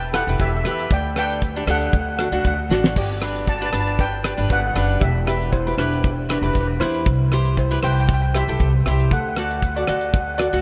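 Steel pan and upright bass open this bouncy, carefree calypso excerpt together, with cavaquinho and drums joining at 0.1 seconds. The tempo is a straight 117 BPM in 4/4. The up-front lead steel pan carries the melody with a shimmering, metallic tone, played with hard rubber sticks. Beneath it, the woody pizzicato upright bass sits up front and warm, while the crisp, picked cavaquinho fills in the accompaniment with a bright acoustic sparkle. The damped 70s kit is dry and tight, with a fat snare, rim clicks, hi-hat, kick and crash cymbal, and it plays a fill at 2.7 seconds. Harmony moves from Em through Dsus4 and D to G, then Em, C and D, all set in a vast, echoing space with a long, huge reverb tail.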